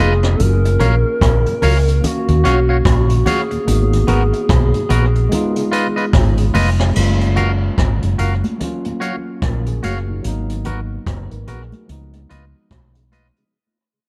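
A reedy, woody FM lead carries the melody from the start of this romantic, smooth lovers rock excerpt, with a soft attack, vibrato and portamento through chorus, phaser and tape echo, and it falls silent at 6.6 seconds. Beneath it, a round, punchy hollow-body electric bass sits up front, while a clean tine electric piano, twangy clean guitar stabs and a very quiet, lightly overdriven tonewheel organ with slow rotary movement fill out the accompaniment. A jazz kit played with brushes, with dark cymbals and a boomy kick, joins almost at once alongside thick-skinned, high-tuned congas, both touched with tape echo, the congas sitting in the background. The harmony cycles through lush seventh and ninth chords, F#maj7, D#m9, G#m9 and C#9, in a lilting swung groove. The dark, warm production has a small-room feel, and the whole passage fades out from 7.0 seconds onward.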